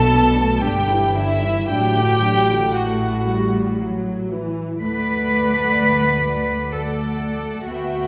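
A tender, lyrical classical movement for string orchestra opens with every section bowing together, gently rubato in 3/4 at around 55-65 BPM in D major. An intimate chamber violin section carries the melody with light vibrato and soft attacks over a floating second violin line, a dark, woody viola accompaniment with a smooth top, an up-front cello section with light vibrato, and pure double basses beneath, all playing sul tasto. The harmony moves from Bm7 through Em7/G and D/A to an open A5 before arriving on D at 4.8 s, and the brief passage, cut from a longer piece, sits in a wet recital hall reverb with a 1.6 s decay, as if recorded in a church or concert hall.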